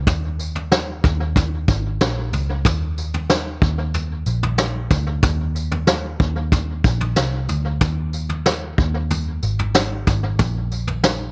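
Dream pop at 93 BPM in a straight 4/4, this short excerpt cut from a longer piece has a floating, dreamy mood. A vintage brush drum kit sits up front, its kick, snare, tambourine and toms played with brushes in a studio room, with a tight kick, a medium-tuned snare and a rolled-off top that keeps the kit mid-forward and warm. An analog delay on the drums adds to an echo-heavy mix with light reverb. Beneath them, a vintage muted picked electric bass moves between Ab1 and Eb2, its amped, foam-muted tone dark and round. Bass and drums run together through the whole 11.3 seconds as a single section.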